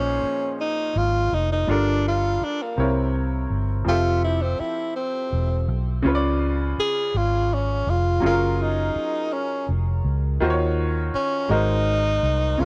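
Tender and warm, this slow R&B excerpt in a swaying 6/8 features a breathy tenor saxophone soloing with light vibrato over a bright, brilliant grand piano and a dark, round, foam-muted electric bass, all bathed in light reverb and the worn, warbling pitch drift of old cassette tape through a lush progression moving from Bbm11 to Ab7.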